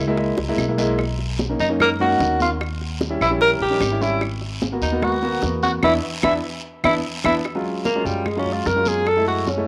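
Afro-Cuban jazz with a fiery, driving energy at 148 BPM in a straight 4/4, cut from a longer piece and captured as a home recording on cassette with a moderate spring reverb. A concert grand piano sits up front with a polished, present tone and deep bass, its cassette-tape colour framing chords that move from a rootless Gb9 through Bmaj7, Eb7b9 and Abm7. Beneath it, a woody, thumpy pizzicato upright bass on steel strings anchors the low end, while a percussion bed of ringing, high-tuned congas played with soft hands, round, low-tuned bongos heard close and dry, raspy guiro and woody claves keeps the groove moving in the background. The tenor saxophone enters at 1.6 seconds, up front yet roomy and distant, with a punchy attack, light vibrato and scooped notes in a jazz style. After a drum fill near the start, a band accent on an E5 chord arrives at 5.8 seconds and a second fill follows at 6.6 seconds, leading into 7.5 seconds, where the saxophone takes a solo over Gbmaj9 shifting to Gbm9.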